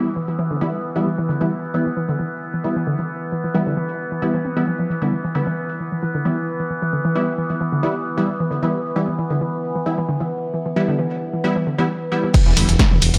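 An aggressive, detuned sawtooth rave stab, under a filter sweep, opens this hypnotic, industrial excerpt of driving peak-time techno in E minor at 133 BPM, sitting on an E minor chord with chorus, reverb, digital delay and sidechain pumping. A warbling, lo-fi pluck riff with tube saturation and lush chorus plays up front over a resonant drone of moving overtones, while a very quiet downlifter sweeps by in the first 1.5 seconds. At 12.3 s a layered, up-front electronic kick and a punchy analog drum machine with snare, hi-hat, crash, ride, shaker and toms arrive, quickly followed by a growling, thick FM bass.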